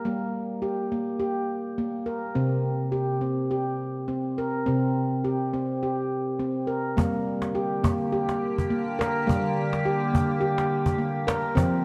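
Meditative and hypnotic, this world-music excerpt at 104 BPM in G minor pentatonic opens with a bright, ringing stainless-steel handpan playing up-front arpeggios over Gm and C5 harmony, joined at 7.0 seconds by a woody, compressed cajon with faint snares and at 7.5 seconds by an evolving, morphing wavetable pad holding sustained chords through chorus and phaser, all bathed in a lush hall reverb.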